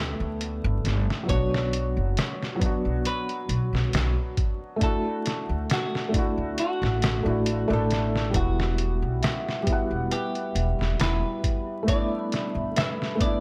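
A clean hollow-body electric guitar carries the melody through tape echo over a soft, felt-muted upright piano with audible action noise, harmonic tremolo and its own tape echo, while a woody, gut-strung pizzicato upright bass with tube saturation sits up front. This is a smoky, cinematic trip hop piece at 68 BPM in E dorian with a lightly swung 16th feel: a pitched-down, muffled sampler-style kit with a thumpy kick, hi-hat and snare moves through a chord sequence from G6 and Bm to Dadd9. At 8.3 seconds, on an Emadd9 chord, a detuned square-and-sawtooth analog pad with chorus and a bell-like celesta playing gritty 12-bit arpeggios through digital delay enter in the background, before the bass drops out at 12.7 seconds beneath studio reverb and vinyl crackle.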